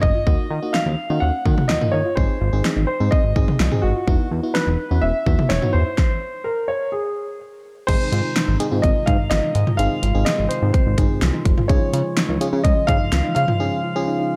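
A straight, driving 4/4 pulse at 126 BPM comes from a punchy, up-front electronic pop drum kit and a glossy, detuned chorused synth bass, and the groove halts for a stop at 6.0 s in this cool, dark synth-pop excerpt. Over them a mellow grand piano carries the melody with tape echo, while a glassy, bell-like FM electric piano and a soft, round background pluck with chorus and echo fill in accompaniment and arpeggios. A hollow stopped-flute pipe organ adds sustained chords from 7.9 s before a short break at 13.6 s.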